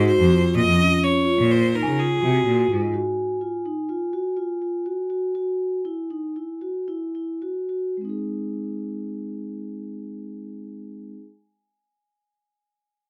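A clear, biting violin carries the melody with vibrato for just the opening seconds of this restless, shimmering excerpt of contemporary chamber music in 5/4. It sits over a rich, focused bowed cello bass, a very quiet, mellow vibraphone second line with medium motor vibrato, and a faint, bell-like glockenspiel touch, while a second, up-front vibraphone with its motor off keeps arpeggiating in Ab mixolydian until 11.2 s. Moving from Ab7 and Bbm7 through a rootless Ebmadd9 to Ab, the tempo ranges from 106 to 126 BPM and eases down from 3.9 s, all in a close, detailed recording with light reverb.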